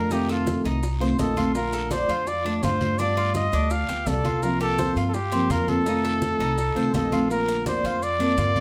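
A breathy, whispered trumpet sits up front with vibrato and a soft attack, carrying an intimate pop-style solo melody over a sunny Cuban son and guajira groove at 167 BPM in Bb major, moving through F7, Bbmaj7, G7 and C7sus4 before settling on Bbadd9 at 7.3 s. Beneath it, a full-bodied, thumb-plucked nylon-string guitar plays a deep classical accompaniment, a bright, metallic Cuban tres picks arpeggios on double strings, and a woody, growly pizzicato upright bass anchors the low end. Tucked in the background are close, dry, thin-skinned congas, close, round, soft-handed bongos that drop out at 7.3 s, a raspy, close and dry guiro and close, grainy maracas, all in a moderate studio reverb in this warm fragment of a longer piece.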